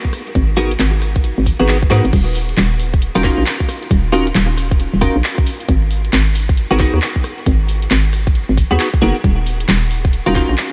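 This bouncy, skippy two-step UK garage excerpt moves at 135 BPM with a 63% 16th-note swing, built on a tight, up-front electronic kick and a layered garage kit of handclaps, hi-hat, rim clicks and crash cymbal, both set in studio reverb, while a hollow, knocking FM bass punches through with fast-attack, decaying notes and a clean, compressed electric guitar adds picked stabs colored by analog chorus and delay over minor-ninth and minor-seventh chords moving from Abm9 to Ebm9, all within a light digital ambience.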